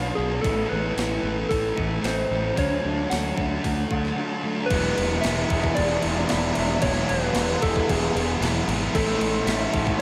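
A blissful, dreamy slice of shoegaze and dream pop rock, this 10-second excerpt moves at 113 BPM in a straight 4/4 and sits in E mixolydian, drifting from Am through Dmaj7 to Eadd9 before landing on A. A soft struck synth lead carries the melody from 0.2 seconds, its round, gentle, keys-like FM tone with a sub octave ringing through chorus and a diffuse ambient delay. Beneath it, a thick fuzz guitar with lush chorus and a raw, lo-fi garage guitar with overdrive and reverse reverb grind out riffs in the background, while a very quiet guitar through a small old amp picks slightly broken-up arpeggios. A fuzzed, punchy fingered bass anchors the low end, and a crisp 8-bit drum machine, overdriven and re-recorded in a small room, adds a thumpy kick, medium-tuned snare, hi-hat and crash from 0.4 seconds. At 4.7 seconds a bright, double-tracked distorted guitar joins with its own riff as the harmony opens onto Eadd9, and the whole mix is soaked in a cathedral reverb with a long 6.3-second decay.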